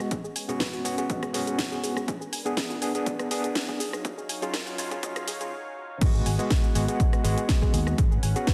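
Moody, hypnotic deep house excerpt in which a filter sweep builds over a gritty, fast-tremolo tine electric piano with tape echo, a warbling chorused analog pad and a soft, round pluck arpeggio, all pumping against a punchy, tape-warm kick and a house kit with cracking snare and shaker, until a brief break at 5.5 seconds gives way to the drop at 6.0 seconds, where a growly overdriven fingered bass enters.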